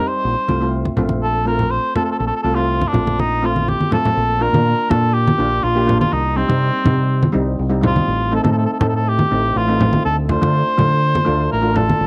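Calypso with a bouncy, sunny mood, heard as a short cut from a longer piece, where a warm cor anglais carries the melody up front in a classical style, with light vibrato and a soft attack. Shimmering cello steel pans, played with hard rubber sticks and given a cassette-tape tint, fill out the accompaniment beside a round, dark fingered electric bass and low-tuned, close congas played with soft hands, which add a drum fill from 3.5 to 4.2 seconds. The home cassette recording carries a light reverb.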